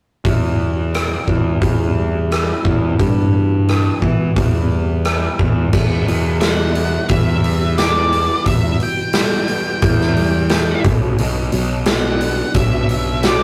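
Quiet-loud alternative rock in E minor at 88 BPM, brooding and cathartic, cut from a longer piece and captured as a rough rehearsal-room recording with tube saturation and light reverb. A full-bodied fingerpicked dreadnought plays arpeggios in the background, while a huge, natural-sounding arena kit with a punchy kick and medium-tuned snare sits up front beside a bright, overdriven fuzz bass. At 6.4 seconds an octave-fuzz lead guitar enters with a distorted, slapback-echoed melody, and the harmony shifts from E minor to B minor at 10.8 seconds.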